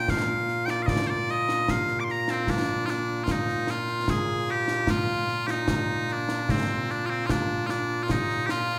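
In a stately three-beat pulse, this stirring, ceremonial excerpt of Scottish pipe music features loud, piercing bagpipes carrying a continuous, up-front melody from the very start, joined a moment later by concert snare and bass drum with bright cymbals, all ringing out in the moderate reverb of a recital hall.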